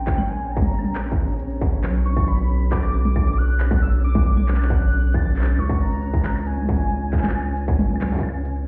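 IDM at 136 BPM, glitchy and intricate, this brief cut from a longer piece sets a velvety synth lead with chorus, cassette tape and digital delay over an up-front, rubbery, wave-folded square bass, a flickering granular texture in the background, a distorted electronic kick and an industrial kit of claves, handclaps, smooth hats and toms with tape echo, all heard muffled as if through a wall in a stone room, moving from A#m to Bm at 1.8 seconds and C#5 at 5.6 seconds.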